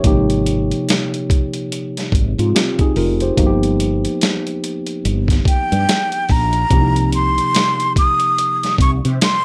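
Soulful and relaxed, this short neo-soul and R&B excerpt sits at 72 BPM in Ab major, with a swung sixteenth-note feel and light reverb around it. A tine electric piano, worn and slightly out of tune, plays the accompaniment through a combo amp, moving from Abmaj7 to G7alt at 3.4 seconds and on to Cm7. Beneath it, a woody fretless electric bass with a hollow-body tone and ensemble chorus holds down the low end. A gritty, compressed boom bap sampler-style kit with a thumpy kick, medium-tuned snare and hi-hat carries the groove, its sound caught in a large room. At 5.5 seconds a breathy metal jazz flute enters with the melody, its vibrato and soft attack heard close-miked and set in slapback echo and plate reverb. All four parts sit up front, with the flute the loudest voice once it arrives.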